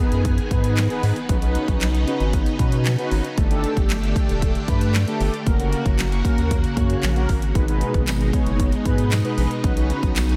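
Upbeat and euphoric, this dance-pop passage opens with a barely audible electronic impact as mellow, brassy synth brass with detuned chorus and shimmering, vintage string-machine violins hold sustained chords, both pulsing with sidechain pumping. Beneath them a round, deep analog bass with a dark, wave-folded edge pumps along, while a punchy, up-front pop drum kit drives the groove with layered kick, fat snare, hi-hat and handclaps. A jingly, close and dry tambourine slips into the background at 8.1 seconds, and light digital reverb gives the whole mix a polished sheen.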